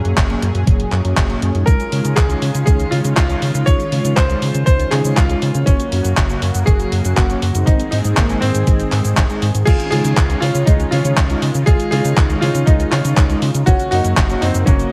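Vinyl crackle sits over a dry mix in this romantic, danceable italo disco excerpt at 120 BPM in Db major, with chords moving through Gb, Dbadd9 and Ab. A round, deep analog bass and a thumpy electronic kick anchor the straight groove, while a clean 12-bit drum machine adds cabasa, crash, handclaps and hi-hat with gated reverb. In the background, a smooth, detuned analog pad with chorus holds sustained chords, and mellow, brassy synth stabs carry a cassette-tape colour, while from 1.7 s a bright, intimate baby grand piano plays the melody through tape echo, its worn tone and audible action noise sitting up front.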